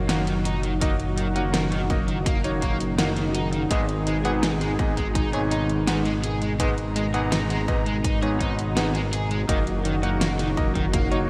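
A straight 4/4 pulse at 83 BPM carries this nostalgic, driving synthwave piece in G# minor, with a pop kit's fat snare and metallic hi-hats bathed in gated reverb and a punchy electronic kick arriving at 0.8 s. A glossy, up-front chorused synth bass and a bold, brassy analog pad, both pumping against the sidechain, hold sustained tones over D#m/F# and G#m, while a vintage electric grand with a clangy low end plays delayed stabs. An overdriven, double-tracked semi-hollow guitar riff, treated with chorus, a low-pass filter and delay, sits within a lush hall reverb and bright 1980s-style digital production in this short excerpt.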